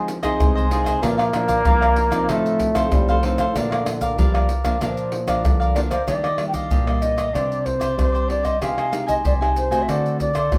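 Up-front percussion of maracas, pandeiro, tamborim and a deep surdo, compressed and saturated under soft hands, drives this sunny, playful samba-choro excerpt in Eb major at 95 BPM, where a crisp, bright picked cavaquinho and a fingerpicked classical nylon-string guitar with fresh strings and finger squeak accompany a distant, roomy jazz-style trombone with scooped notes and light vibrato until 6.0 seconds, while an airy, woody baroque flute with unsteady vibrato takes the tongued melody from 5.7 seconds, all set in a wet studio reverb.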